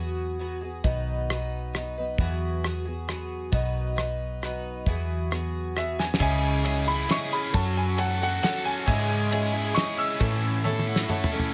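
A lightly reverberant mix opens this nostalgic, hopeful stretch of folk and heartland rock in E major, moving at 134 BPM in a straight 3/4 and cut from a longer piece. A shimmering, octave-doubled twelve-string acoustic guitar with audible finger squeak rings through a plate reverb over a round, foam-muted fingered bass, with a damped 70s kit entering at 0.8 seconds with a fat snare and dark cymbals, as the chords sway between Eadd9 and B. At 6.2 seconds the music turns toward C#m, F#m and A as a crunchy, double-tracked overdriven guitar riff, a jingly tambourine and a woody upright piano in the background join the brilliant, worn-sounding concert grand's high melody, which carries plate reverb and analog delay, before drum and upright piano fills close out the final second.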